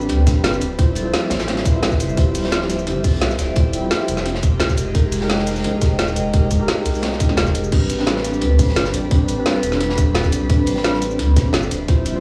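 A tight, up-front electronic kick drives this dreamy, soulful liquid drum and bass excerpt. It is layered with a produced kit of woody snare, metallic hats, cabasa and crash, and a gritty, saturated breakbeat kit with high-passed hats and snare sitting in the background. A round sine sub bass anchors mellow tine electric piano chords washed in dub echo, while an airy, detuned pad pumps under chorus and phaser, a bright vibraphone rings out tape-echoed arpeggios, and the chords move from Am11 through Dm11 and Fm11 before returning to Am11 at 7.7 seconds, the whole mix sounding as if played on a big sound system in a bare room.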